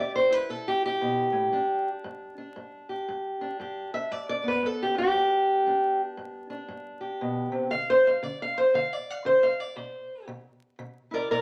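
A fingerpicked steel-string parlour guitar, dark, boxy and up front, opens this laid-back, swaggering acoustic country blues excerpt in G mixolydian at 117 BPM with a swung 4/4 feel, playing alone from C to G before a chordless passage at 7.7 seconds and a return to C at 9.8 seconds, all set in a moderate studio reverb with vinyl crackle and tuned slightly below standard pitch.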